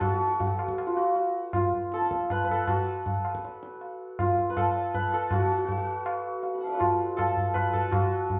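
The rhythm moves in a seven-beat cycle at 160 BPM with a straight feel, and the pulse speeds up across the whole 8.4 seconds of this short cut from a longer Hindustani classical piece. The mood is serene and meditative. A santur carries the melody across a range of F4 to B5, its hammered strings shimmering and ringing with a warm, acoustic tone placed up front. Beneath it, a low-tuned tabla sits slightly lower in level, its short-ringing strokes close and acoustic with a small-room character. Both parts play together from start to finish, captured live in one room with a lush large-studio reverb and a soft top end that rolls off above 7.9 kHz.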